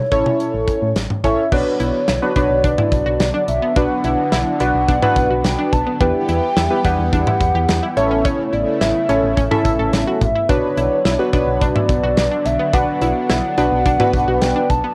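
Recorded at home onto cassette in a small booth with a short, moderate ambience, this synth-pop excerpt has an intimate, worn sound. At 107 BPM in a straight 4/4, the mood is wistful yet bright, and the chords move from A through Bmadd9, Emadd9 and Aadd9. A hollow, woody clarinet-like synth lead carries the melody with vibrato, chorus, cassette-tape colouring and plate reverb. It sits over up-front analog keys, detuned and sawtooth-based with a filter sweep, phaser and chorus, while a punchy, dark FM bass anchors the low end and a polished, airy acoustic drum kit with a tight kick, medium-tuned snare, hi-hat, toms, crash and cowbell sits up front. At 1.5 seconds a smooth, slow-attack analog pad enters in the background, and a warbling, vintage analog pluck begins its arpeggios with tape echo and plate reverb.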